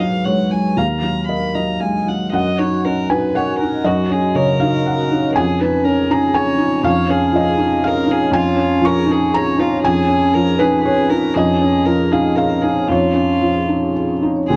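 A rubato 3/4 at 119 BPM carries this reflective, longing neoclassical excerpt, where a mellow, intimate felt-muted upright piano sits up front with audible action noise, a single rich, floating violin sings a distant sul tasto melody above it, and from 2.3 seconds a woody marimba with medium mallets adds arpeggios in the background, all heard through moderate studio reverb and the worn, warbling pitch drift of old cassette tape.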